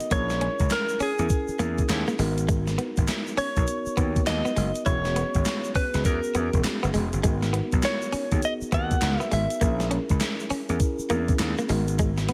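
Confident and bouncy, this short cut from a longer new jack swing track rides a swung sixteenth-note feel at 101 BPM in G# minor. A gated 80s digital drum machine sits up front with a thumpy kick, a gated-reverb snare, handclaps and hi-hat, its sampler-style sound tape-warm and re-recorded in a large room, while a grainy, band-limited tube shaker ticks along in the background. A gritty, overdriven slap bass, punchy and bright, anchors the low end, and a mellow tine electric piano adds warm, clean accompaniment. Two clean, direct-recorded electric guitars round out the arrangement: one, warm and up front, plays a picked, compressed melody that drops out at 9.9 seconds, and the other, brighter with a subtle chorus, plays a picked riff from 0.1 seconds to the end. The harmony moves through A#m7b5, G#m7 and E6 chords, and the overall sound is dry with little reverb.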